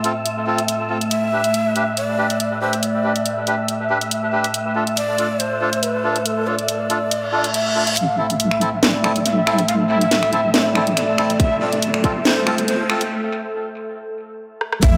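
Brooding and meditative, this half-time deep dubstep excerpt opens on a moody analog pad with chorus, reedy melodica stabs in dub echo, an up-front garage kit of cracking snare, finger snaps, hi-hat and rim click through analog delay, and an airy wind-like noise layer, before a bamboo shakuhachi with vibrato and chiff enters at 1.1 s behind a low-pass filter and dub echo. After a reverse cymbal, a build-up begins at 8.0 s: a riser and sub drop sit in the background, a filter sweep works on the shakuhachi, and a detuned, compressed wobble bass arrives with chorus and tube saturation. A tight electronic kick lands at 11.4 s ahead of a brief break and a drum fill, and the whole mix sits in an echo-heavy chamber ambience.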